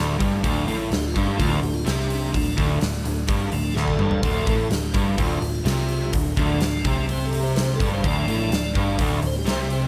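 Brooding and heavy, this cut from a longer blues rock power trio and southern rock piece sets a raw, dark, double-tracked overdriven electric guitar riff up front over a round, foam-muted picked bass, with a huge arena drum kit of punchy kick and hi-hat, snare and toms adding a drum fill at 3.8 seconds, while a piping, scooped tonewheel organ with key click and slow rotary speaker holds sustained chords as its solo voice in a moderate club reverb.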